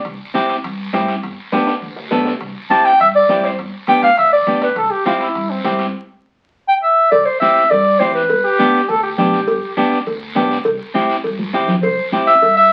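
Crackling like a very old 78 rpm record and bathed in a wet studio reverb, this joyful, danceable cumbia is cut from a longer piece. Ringing timbales and cowbell and thick-skinned, high-tuned congas sit in the background beside a raspy guiro, joined by a woody pizzicato upright bass and a dark, clean semi-hollow electric guitar up front. A warm, distant clarinet carries the classical-style melody from 2.7 seconds, a brilliant, punchy trombone with vibrato adds brief second lines from 4.8 seconds, and drum fills mark the phrases before the clarinet returns at 11.8 seconds.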